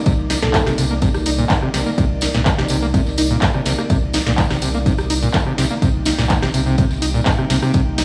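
Trippy and playful, this 8-second acid house excerpt at 125 BPM in 4/4 sits on a Cm7 chord. It is driven by a squelchy, distorted acid bass riff with a resonant filter sweep, a deep saturated sub bass and a punchy electronic kick. A punchy analog drum machine adds handclaps, hi-hat, ride, rim click and snare, with a jingly tambourine and a very quiet, gritty sampler-style kit beneath. A lush vintage string machine holds sustained chords in the background with sidechain pumping, while a round, tine-like synth pluck sounds a single A4 at 0.4 seconds through chorus and delay, all in a small, lightly reverberant room.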